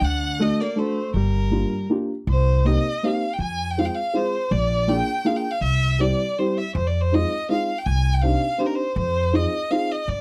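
Bittersweet and whirling, this swung musette waltz fragment sets a clear, focused bowed violin melody with vibrato over a woody pizzicato upright bass, while a dark, clean hollow-body electric guitar adds a brief second line until 1.9 s and a mellow, vintage, slightly detuned upright piano with audible action noise accompanies from 0.4 s, heard in a dry, close 1970s-style studio sound.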